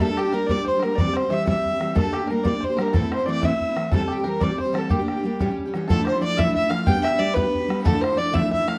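This spirited, lively Celtic jig in 6/8 is heard from a point already under way in a longer piece, with the full band playing from the first moment. Up front, a single bowed fiddle carries the melody with a woody, shadowed tone and light vibrato, while a picked steel-string acoustic guitar, equally prominent, supplies the accompaniment with audible finger squeaks and an auditorium-like character. Further back, a twangy, percussive banjo played with fingerpicks and an airy, reedy metal whistle with tongued chiff, vibrato and rolled-off highs each add a second line, the whistle sitting higher than the fiddle. A bodhran drives the dance with an open, boomy sound from a live room. Moderate studio reverb and a dark, warm production hold the parts together, and the harmony moves around Gm, C and Am before shifting to Dmadd9 and G at 5.9 seconds.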